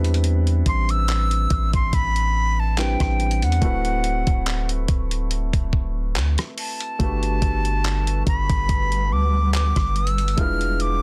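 A reedy, airy silver concert flute carries the melody from 0.7 seconds in this romantic, smooth contemporary R&B piece at 71 BPM in G major, floating over a soft felt-muted upright piano, a deep, dark 808-style bass with long decaying notes, and a gritty, compressed sampler-style drum kit of thumpy kick, hi-hat, rim click and handclaps, while a cloudy granular pad with built-in reverb and sidechain pumping joins at 8.1 seconds as the chords move from Am11 through D13 and Gmaj9 to E7b9, captured in a dry, dense and heavily limited modern master.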